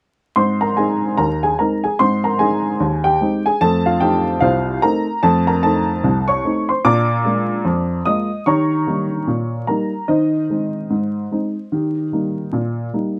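A worn, woody upright piano, slightly detuned and placed up front, carries this playful, cheerful ragtime fragment on its own from 0.4 to 13.2 seconds. The tune sits at 74 BPM in 2/4 and in Ab major, with a 60% swing on the sixteenth notes that gives the phrasing a jaunty, loping bounce. The piano covers a range from C2 to Eb6. Its harmony moves from Ab through F7, Bb7 and Eb7 to Ab/Eb before settling on Eb. Close, detailed microphones and light reverb keep the sound intimate, while a layer of vinyl crackle adds an old-record patina to this short cut from a longer piece.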